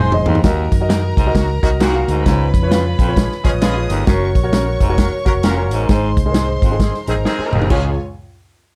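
A dark, warm production with light reverb frames this short cut from an uptempo 1960s-style soul track in Db major, running at 132 BPM in 4/4 with a swung eighth-note feel that is danceable and joyful. A vintage drum kit sits up front, with a punchy kick, medium-tuned snare, hi-hat, toms and crash heard through a small room with a rolled-off top, opening with a fill and adding another at 7.3 seconds. Underneath, a foam-muted fingered electric bass gives a round, amped low end, while a mellow grand piano with audible action noise plays accompaniment and an electric guitar through a small old amp adds slightly broken-up, lo-fi stabs. A close, sul tasto violin section with light vibrato plays a second line from the start. A breathy, whispered baritone saxophone carries the riff from 0.3 seconds, and a clear horn section, distant and roomy with octave doubling, joins as another second line at 1.3 seconds. 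The chords move from Ebm through Db7, Gb and Ab before resolving to Db as the passage turns to a new section at 7.7 seconds.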